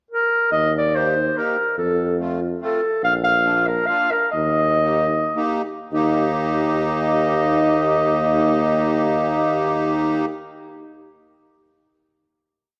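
A dark, warm production in a moderate concert-hall reverb frames this short, festive and jolly alpine folk dance band piece in 3/4 and Eb major, moving between 99 and 145 BPM. After a brief clarinet pickup, the soft-attacked, distant clarinet carries a classical-style melody in period phrases built from motifs, the reedy, sweet accordion with its light tremolo tuning plays off-beat triad chords, and the clear, vintage tuba sets down root and fifth on the main beats. The music slows from 3.0 to 5.9 s, and the band then holds a final chord until about 9.5 s.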